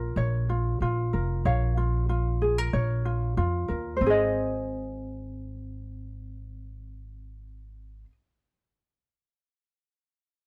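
Easy-going and sunny, this short pop excerpt moves in a straight 4/4. A thumb-plucked acoustic ukulele carries the accompaniment, its light tone sitting up front in the mix. Beneath it, a pizzicato upright bass with steel strings supplies a woody, thumpy low end with a dark edge, also placed close and present. The harmony rests on B-flat minor before shifting to A-flat at 4.0 seconds, where the music moves into a new section. Both parts play together from the start until about 8 seconds, framed by a light touch of reverb.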